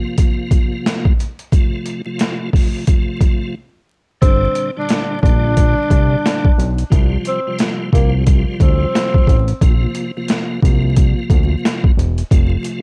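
Moody and reflective, this dark boom-bap hip-hop excerpt in G minor swings at 89 BPM, opening on a break where a piping, lightly overdriven tonewheel organ with key click and fast rotary speaker lays Bbsus2 and F chords under gritty, pitched-down sampler drums with a thumpy kick and high-tuned snare, before a fat, detuned analog bass enters at 4.2 seconds alongside a breathy, whispered tenor saxophone solo with scooped notes and digital delay that plays until 9.6 seconds, all wrapped in vinyl crackle.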